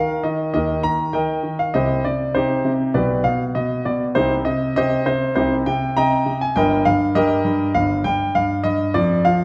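A clear, natural-sounding concert grand piano plays alone and sits up front, its deep bass reaching down to G1 while the upper register extends to Bb5, in this elegant, playful classical-period sonatina fragment cut from a longer piece. The phrasing in 4/4 is shaped with gentle rubato, moving from Eb through Cm and G/B before settling on Eb/G at 6.6 seconds. A wet recital-hall reverb with a 1.7-second tail surrounds the instrument, which is tuned to A4 = 444 Hz.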